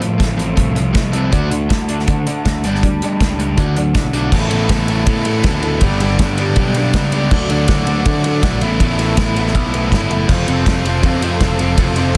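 Indie rock at 161 BPM in a jangly, upbeat mood, cut from a longer piece, with two dark, overdriven guitars playing riffs, the semi-hollow one washed in lush chorus and digital delay, over a loose, up-front drum kit with a tight kick and a pumping small-room sound. A growly, punchy picked bass enters at 0.2 seconds, while a breathy small flute group with vibrato holds sustained chords in the background. Light reverb sits on a dense, heavily limited modern master as the chords move from F/A through D and Gadd9 to Asus2, landing on F at 10.3 seconds.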